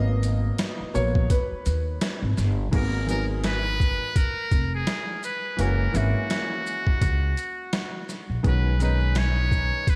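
A muted trumpet carries the melody in this mellow, nocturnal jazz-hop fragment, entering at 2.7 seconds with a buzzy, breathy, whispered tone touched by analog delay. Beneath it, a bright baby grand piano supplies the chords from the start, its worn, intimate sound carrying audible action noise as the harmony moves from G#m9 to F#9 to B69. A pizzicato upright bass sits up front with a woody, steel-string timbre. The boom bap kit is sampler-style, compressed, pitched down and gritty, with a thumpy kick, medium-tuned snare, hi-hat, shaker and crash cymbal, and it was re-recorded in a large room. Light studio reverb and vinyl crackle wrap the swung groove in a late-night haze.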